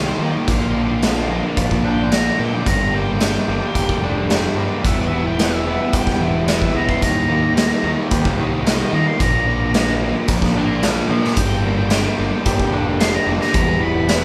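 This dark, cathartic slice of quiet-loud alternative rock opens at 110 BPM with an octave-fuzz lead guitar soloing high over a double-tracked, crunchy guitar riff bathed in spring reverb. Beneath them, a compressed, slightly broken-up guitar through a small old amp plays arpeggios with harmonic tremolo in the background, and a round, overdriven fuzz bass anchors the low end. A raw garage drum kit joins at 0.5 seconds, up front with a punchy kick, gritty saturation and a pumping stone-room sound, as the band plays live in one large studio room through chords of Bb, Gm, Em and Eb.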